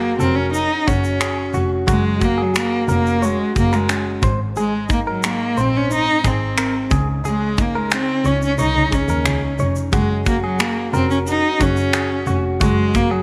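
A rich, bowed cello sings the heartfelt melody with vibrato over a full-bodied, fingerpicked jumbo steel-string acoustic guitar and a dark, softly bowed double bass played sul tasto, moving through Gbadd9, Ab and Dbsus2 chords in this sunny acoustic pop passage at 90 BPM. From 0.2 seconds a twangy, compressed clean electric guitar recorded direct adds picked arpeggios bathed in spring reverb, while a polished studio kit of finger snaps, shaker and a tight kick sits up front. Light reverb and small room ambience give the piece an intimate, airy finish.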